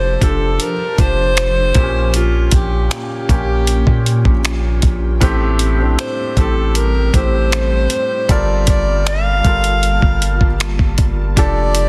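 A straight 4/4 groove at 78 BPM from a gritty, compressed sampler-style drum kit of finger snaps, hi-hat and thumpy kick enters at 0.2 s over a deep, long 808-style sine bass in this dreamy, tender contemporary R&B excerpt, where an up-front alto saxophone with subtone, vibrato and tape echo plays a jazz-style solo over soft, felt-muted upright piano with audible action noise and an ethereal, detuned pad with chorus, tremolo and sidechain pumping set in the background, the dry, dense, heavily limited master moving from F69 through Bbm6, Am7 and Gm9 back to F69.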